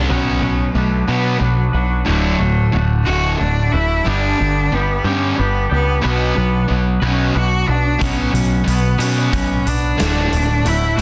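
A bowed cello, a double-tracked fuzz guitar and an overdriven bass open this cathartic, restless slice of quiet-loud alternative rock together, in a straight 6/8 with a half-time feel. The single cello carries the melody up front, rich and smooth with vibrato, a slapback echo and a distant quality. Beneath it sit the bright, fuzz-drenched guitar riff and the round, foam-muted picked bass, while a dark, clean, fingered guitar with harmonic tremolo weaves twangy arpeggios underneath from 0.1 seconds. The harmony moves from Bmadd9 through D and G to Bm, returning to D near the end. At 8.0 seconds a big acoustic drum kit arrives with hi-hat, a punchy kick and a medium-tuned snare with soft clipping, set in a natural big-room sound. The whole mix sits in small room ambience under a dense, heavily limited modern master, and this fragment is cut from a longer piece.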